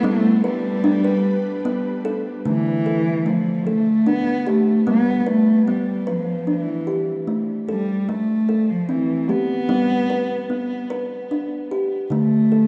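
A dark, bowed cello melody with vibrato opens this gentle, meditative world piece at 74 BPM in 3/4, joined from the start by woody, ringing kalimba arpeggios bathed in shimmer reverb and an ethereal, airy pad of sustained chords that drops out at 2.4 seconds and returns at 12.1, the whole heard through echoing small-room ambience and a warm production over a G, D5, G, Am, G, Dm progression in D dorian.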